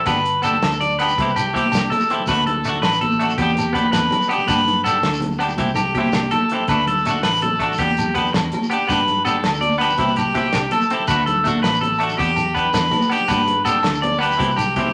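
A moderate large-studio reverb surrounds this carefree, warm highlife guitar band excerpt in G major at 109 BPM in 12/8, where a twangy, slightly broken-up electric guitar plays bright arpeggios up front over a clean, compressed second guitar with warbly pitch drift, a round, foam-muted fingered bass, a rolled-off soul drum kit with tight kick, distant high-tuned congas, and ringing agogo bells and a grainy shekere in the background, all cycling through G, C, D and Em7.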